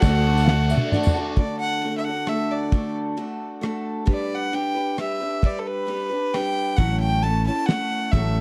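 With a straight feel in 3/4, this open-road folk rock and heartland rock excerpt rides on a cloth-damped, thuddy drum kit up front, with a drum fill at 0.5 s, and a growly picked electric bass that drops out at 0.7 s and returns at 6.8 s. A biting, nasal fiddle carries the melody over a boxy parlour steel-string acoustic guitar, while the opening moments briefly add an overdriven, double-tracked garage guitar riff with phaser, a very quiet tonewheel organ with key click and slow rotary, a worn baby grand piano with audible action noise, a jingly tambourine and a woody upright piano line in the background. The dry, close 1970s-style studio sound sits in a small room as the harmony moves from D to G and on to A6.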